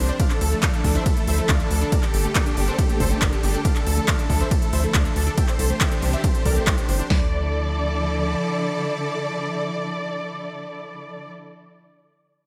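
A dreamy, reverb-soaked hall sound frames this emotional, bittersweet slice of uplifting trance, cut from a longer piece. It opens mid-drop, with a huge, detuned supersaw lead carrying the melody over lush bowed strings, a tight, driving sequencer bass, and a round, warbling analog pluck tucked in the background, all breathing with sidechain pumping. An up-front, punchy analog drum machine is layered with a crisp, tape-tinged big-room kit of handclaps, hi-hat and ride, until the drums and pluck drop out near 7.1 s and the bass stops at 8.4 s, leaving the supersaw and strings to sustain over a return to Dmadd9.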